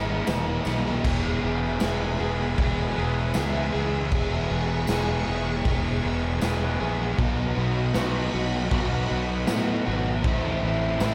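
Wistful and dreamy, this short excerpt from a longer rock piece leans into shoegaze and dream pop at a straight, unhurried 78 BPM in 4/4, centred on E major. Up front, a crunchy overdriven electric guitar plays a picked riff throughout, joined by a growling fingered bass whose bright, amped overdrive gives the low end real bite. A dark, overdriven semi-hollow guitar adds a second picked riff in the background, heard briefly at the start and again from 7.2 seconds, its hollow-body tone smeared by reverse reverb. Behind them, a swirling, warbling vintage string machine holds slow-attack sawtooth chords, coloured by ensemble chorus and phaser. A raw garage drum kit, saturated and gritty with a punchy kick, medium-tuned snare, crash and ride, sits back in a stone room alongside a jingly tambourine, both arriving at 0.3 seconds. The harmony moves from Emaj7 to E, then to B and finally Am, in a dry, close-sounding mix.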